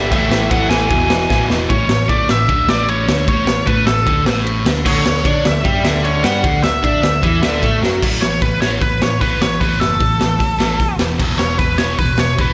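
A straight 4/4 punk rock drive kicks off with guitars and bass, joined at 0.1 s by a gritty, boomy garage drum kit with dark cymbals up front, while an overdriven, biting lead guitar with slapback and tape echo carries the upbeat, energetic melody and breaks into a solo at 8.0 s, backed by a sludgy distorted rhythm guitar and a growly picked bass in the background, with a bright raw garage guitar riffing in a brief opening burst and again from 4.9 s, the whole cut framed by a big arena sound and moderate recital hall reverb.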